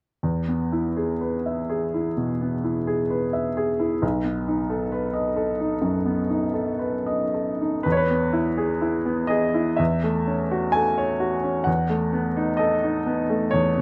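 A bright baby grand piano opens at 0.2 seconds, playing a romantic nocturne alone in E major with a nostalgic, tender mood. The tempo sits around 63 BPM in 4/4, but the beats are uneven, pushed and held back in a rubato feel. The piano spans B1 up to G#5, and its tone is brilliant and natural, heard up front with a light touch of reverb around it. The harmony moves from E to B7, then after a second section begins at 7.8 seconds it returns to E and passes through F#m7 and B7 over an E in the bass. This short cut from a longer piece closes at 13.8 seconds.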